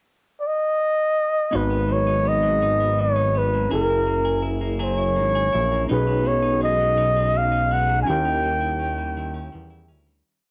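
A breathy flugelhorn leads this slow six-eight R&B piece in G# minor at 55 BPM, its mellow, whispered tone and vibrato carrying a yearning, late-night melody built from short call phrases, with scooped notes and soft attacks. It opens alone at 0.4 seconds over a pickup bar, and at 1.5 seconds the chorus begins as the other parts arrive together. A fat analog bass sits up front with a thick, detuned sawtooth sound, transformer saturation and a filter sweep, playing a slow, sliding line with chromatic approach notes. Behind it, a worn, slightly out-of-tune tine electric piano holds rootless chords with grace notes through built-in speakers, while a clean electric guitar adds a compressed, fingerpicked roll pattern, both colored by cassette tape. The chords move from G#m7 through F#9 and B6 to D#7b9, and a fade-out starts at 8.1 seconds in this home cassette recording with light reverb and digital ambience.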